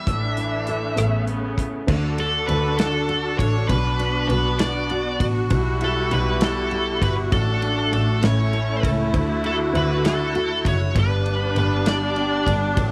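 A swaying, tender six-eight pop ballad fragment, where a bright, distorted high-gain electric lead guitar sits up front carrying the melody while a lush, close string section holds sustained bowed chords beside it. Underneath, a fingerpicked nylon-string guitar with fresh strings and audible finger squeak plays full-bodied accompaniment in the background, and a distant, earthy bowed double bass with light vibrato anchors the low end. A natural country drum kit recorded in a small room, with dark cymbals, a medium-tuned snare, a tight kick and rim clicks, enters at 0.1 seconds over Asus4 and Aadd9 chords, and the harmony then moves into a D-major progression through B minor and G.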